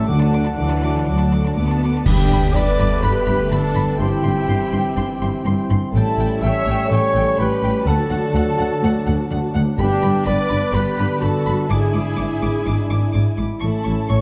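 Distant, dark trumpet stabs drive this triumphant, adventurous excerpt from a heroic film score in G major at 124 BPM, above rich cellos and double basses and a present, mellow French horn section holding sustained chords. Lush violins carry a smooth, vibrato-laden melody with a second violin line gliding in portamento alongside, while background violas, a very quiet fingerpicked harp ringing in arpeggios, and a brief cor anglais and clarinet pair that falls away at 1.8 seconds fill out the texture. Background timpani with calf heads and medium mallets enters at the outset, and bright, up-front clash cymbals and concert bass drum mark a full-band accent at 2.1 seconds, all set in a moderate scoring-stage reverb with a dark production.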